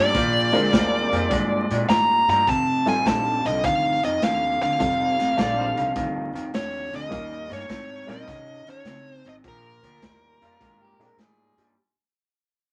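A dark lead guitar with overdrive sits up front, picking a smooth melody over a gritty, rollicking electric blues shuffle in 4/4 with swung eighths. Beneath it, a slightly broken-up electric guitar through a small old amp plays a fingered, compressed, lo-fi riff, while a woody pizzicato upright bass anchors the low end. A raw garage kit of hi-hat, boomy kick and medium-tuned snare sounds saturated in a small, pumping room with a rolled-off top, and a detuned, jangly honky-tonk upright piano adds bright vintage accompaniment from 0.5 seconds. An amplified, overdriven harmonica slips in briefly at 5.4 seconds and returns at 10.4 seconds with light vibrato, tongue slaps and scooped, jazz-style notes. The harmony moves from Bb7 to F7 and Eb7 before coming back to Bb7, set in moderate reverb with vinyl crackle and a fade-out that runs through this excerpt, which is cut from a longer piece.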